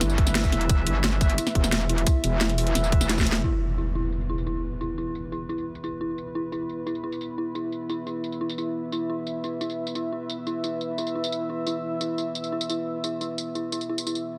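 A metallic, distorted wobble bass sits up front in this aggressive, tense excerpt of dark technical drum and bass at 175 BPM in a straight 4/4, sitting low through the opening drop alongside a tight, overdriven electronic kick before both fall away by 3.4 seconds. The layered drum kit carries on throughout with a cracking snare, bright hats and tambourine, roughed up by overdrive and set in studio reverb, while a filter sweep moves over the drums for the rest of the clip. Dark brass stabs punch in from the background with light vibrato and dub echo during the drop, which closes on a drum fill and a band accent before an up-front electronic impact lands at 3.4 seconds. Underneath, an eerie, inharmonic synth bell plays arpeggios with 12-bit sampler grit, dub echo and sidechain pumping, framed by a nasal, detuned analog pad holding sustained chords and a warbling ambient pad that adds a deep, moody haze. 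The mix has light digital ambience and a dense, heavily limited modern master.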